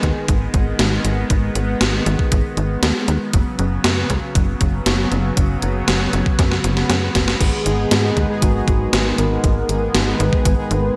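Bright 1980s-style digital production bathed in a lush hall reverb frames this cinematic, driving synthwave fragment in G# minor at 118 BPM, where a mellow, detuned supersaw holds sustained chords with chorus and sidechain pumping over a punchy, ring-modulated sawtooth sequencer bass, a thumpy overdriven electronic kick and an up-front gated drum machine of crash, hi-hat and gated-reverb snare, until a drum fill at 6.4 s leads to a round, dark octave-layered triangle lead with vibrato, cassette tape colour and digital delay at 7.4 s, joined by fat, brassy analog synth stabs at 7.7 s.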